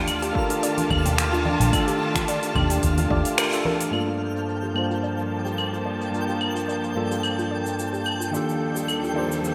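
Wistful and smooth, this sunset chillout fragment, cut from a longer piece, moves at 109 BPM in G minor with a gentle 16th-note swing, set in a lush hall reverb and a bright 1980s-style digital sheen. A clean tine electric piano sits up front through a combo amp, carrying the accompaniment with delay, while a clear, bowed symphonic string section holds sustained chords with vibrato and a smooth top; both parts pass through a filter sweep from 3.9 s to the end. A twinkling granular texture adds octave-up shimmer high above, and a soft, round pluck traces quiet arpeggios in the background with subtle chorus and delay. Underneath, a dark, foam-muted fingered electric bass gives punchy, rounded low notes, and a deep, overdriven electronic kick joins at 0.4 s, both stopping at 3.2 s, just before a band accent at 3.4 s. A deep house kit of cabasa, claves, finger snaps and metallic hi-hats, overdriven and washed in gated reverb, keeps the groove going, with saturated congas under soft hands tucked in the background until 3.8 s. 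The harmony drifts from Ebmaj9#11 to Gm9 at 3.9 s and returns to Ebmaj9#11 near the close.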